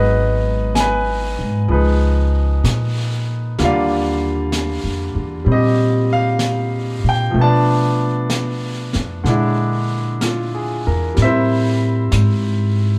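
A clear, up-front grand piano and a woody pizzicato upright bass open this romantic, late-night jazz ballad at 64 BPM with a lazy swing, joined at 0.8 seconds by a softly brushed kit with a high-tuned snare and hi-hat, as the harmony drifts from Abm7 through Ebmaj9 and Bb7#11 to Am7 in a wet studio reverb that sets the trio a little further back in the room.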